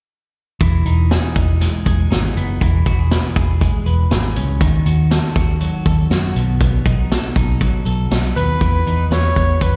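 A straight 4/4 pulse at 120 BPM drives this bittersweet, restless slice of jangly indie pop, with a vintage drum kit of punchy kick, medium-tuned snare and hi-hat sitting up front with a rolled-off top, while a dark, foam-muted fingered electric bass rounds out the low end. A clean, compressed twelve-string electric guitar picks arpeggios through Emaj7, C#m7/E, D#dim and B7, bathed in spring reverb and slapback echo, before the harmony settles on E5 at 8.6 seconds. At 8.4 seconds a solo trumpet with light vibrato and slapback echo steps forward, and the whole fragment sounds like a live gig heard through the venue's PA, with small room ambience and recital hall reverb.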